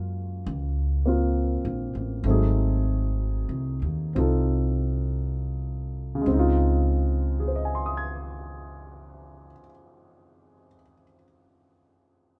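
Jazz ballad in D-flat major, intimate and tender, at a slow 54-69 BPM with a gentle swing that slows down over the first 6.3 seconds, where a polished, present baby grand piano with short sustain plays chords moving from Gbmaj9 through Ab7b9 to Dbmaj9 over a woody, up-front pizzicato upright bass that drops out at 9.5 seconds, leaving the piano to carry on alone until 12.4 seconds, all heard as a warm live band in one room with light reverb and softened highs.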